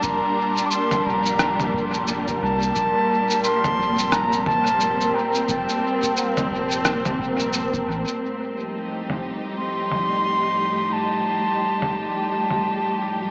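A bright, reedy wooden flute carries the melody through dub echo over lush, distant bowed strings and a bubbling, detuned filter texture in this peaceful, spacious ambient dub excerpt, where a muffled, overdriven, sampler-style kit with cabasa, rim click and toms sits above a deep background electronic kick and a round, soft sub bass that drops out at 8.1 seconds, all washed in wet spring reverb with a small-speaker sound.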